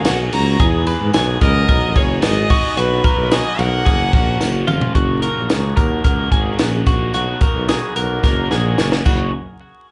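Heard through a club PA with vinyl crackle and a dulled top end, this breezy, nostalgic slice of jangly indie pop pairs a distant, rich bowed violin melody, full of vibrato and portamento with slapback and tape echo, that drops out at 4.7 seconds, with a bright, overdriven garage guitar running through phaser and slapback echo, clean, compressed twelve-string electric guitar arpeggios, an up-front, mellow tuba bassline with light vibrato, a punchy, dry cocktail drum kit with dark cymbals and a high-tuned snare that plays fills at 4.4 and 8.2 seconds, and a very quiet, jingly tambourine.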